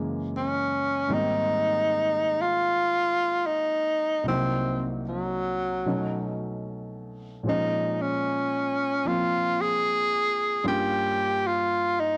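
Swung eighths lope along at 76 BPM in 4/4, setting up a slow, melancholic jazz ballad with a wistful cast. A breathy tenor saxophone carries the melody up front, its subtone delivery colored by vibrato and scooped notes as it moves between Gb3 and Ab4. Beneath it, a grand piano plays intimate, natural-sounding accompaniment across a span from C2 to C5, with its action noise audible. The harmony drifts through rich extended chords, opening on Gb9 and passing through Abmaj9, Cm7b5, B9 and Bbm9 before settling on Gm7b5 at 10.6 seconds. A moderate spring reverb and small room ambience frame a dry, gritty sound shaped by transformer saturation and cassette tape. This 12.2-second fragment is cut from a longer piece.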